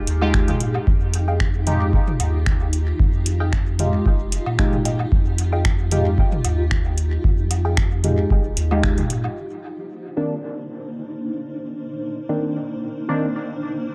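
A hazy, nocturnal dub techno passage at 113 BPM in C minor opens on a blurred, cloudy granular pad holding an Fm9 chord, its slow attack and long release pumping against the kick and bathed in its own reverb. A round, sine-like sub bass sits beneath a deep, tape-warm electronic kick up front, joined by a booming analog drum machine with metallic, low-passed hats and finger snaps, and a layered background bed of electronic woodblock and toms, all with a lightly swung 16th-note feel. A juicy, detuned polysynth plays resonant stabs treated with chorus, phaser and dub echo, while its filter sweeps through the passage. Behind it, a muted, filtered dub chord stab with a short pluck decay adds a higher riff that drops out at 7.8 seconds. After an accent at 8.8 seconds, the drums, bass and percussion fall away, and from 9.4 seconds the pad and polysynth carry a Cm9 chord alone in an echo-heavy mix until the fragment ends.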